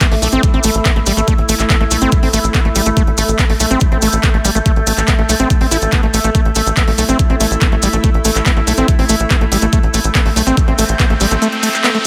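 A straight 4/4 pulse at 142 BPM drives this intense, alien psychedelic trance passage in A minor, cut from a longer piece, with an overdriven electronic kick knocking up front and a layered drum kit adding bright hats and handclaps, both re-recorded in a small room. Grainy, mellow maracas sit close and dry, while a tight, punchy sequencer bass with a nasal filter pluck drives underneath, prominent in the mix. Above it, a squelchy, gritty acid bass riff with sidechain pumping and tape echo undergoes a filter sweep across the whole 12.1 seconds. An overtone-sweeping drone holds sustained chords with moving overtones, chorus and built-in reverb, and an airy, breathy pad with a detuned noise layer floats in the background, both with sidechain pumping. An electronic riser enters at 10.6 seconds, and the kick drops out at 11.4 seconds, leaving the rest to carry the final moments under light reverb.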